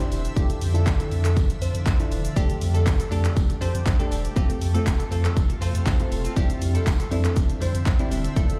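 Dance-pop at 120 BPM in 4/4 with a straight feel, this short cut from a longer piece feels euphoric and summery, moving through Dmadd9/F, Gsus2/F, F and Cadd9/F, every chord resting on F. A punchy, layered electronic drum kit sits up front with kick, handclaps, hi-hat and shaker, while a very quiet, jingly tambourine adds a faint acoustic shimmer from 0.1 seconds. A deep, thick saturated sub bass and soft, round electric-piano-like synth keys with chorus both pump against the kick. An ethereal pad with octave-up shimmer and granular texture holds sustained chords in the background. From 0.4 seconds a crystalline wavetable pluck carries the melody with ring modulation, a moving notch, tape echo and its own pumping, and at 2.4 seconds a bright, twangy clean electric guitar joins in the background with a riff bathed in lush chorus. The whole track sounds as if played on a big sound system in a bare room, with large studio reverb giving it an airy, spacious sheen.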